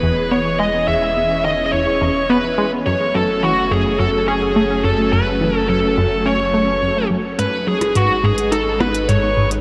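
A distorted, up-front bluesy lead guitar carries the melody through this mysterious, hypnotic fragment of ambient, sequencer-driven space music, over a nasal, detuned sequenced synth riff with analog delay, swirling phased string-machine chords, and a round analog bass that fades in, while clicky electronic hi-hats and percussion blips enter at 7.4 seconds, all bathed in a huge ambient reverb, with shimmer on the guitar, synth and strings, as the chords move from E through F#m to G#m.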